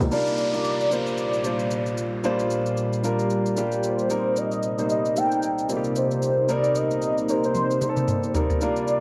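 Late-night and soulful, this short amapiano excerpt in G minor moves at 113 BPM with a gentle swing on the sixteenths, shifting from Gm7 to Cm7 at 4.1 seconds. A concert grand piano sits up front with a rich bass weight, carrying the accompaniment through a cassette-tape haze. Beneath it, a deep, moody ambient pad of detuned sawtooth and sine layers with a sub octave holds long, slow-blooming chords, softened by chorus and its own reverb. A velvety, mellow synth lead carries the melody high above, smooth with vibrato, chorus and analog delay, while an electronic downlifter sweeps through the opening seconds. Electronic shaker and toms keep a produced, tape-tinged pulse, with a drum fill arriving at 7.5 seconds, all set in a small booth ambience that gives the home cassette recording an intimate feel.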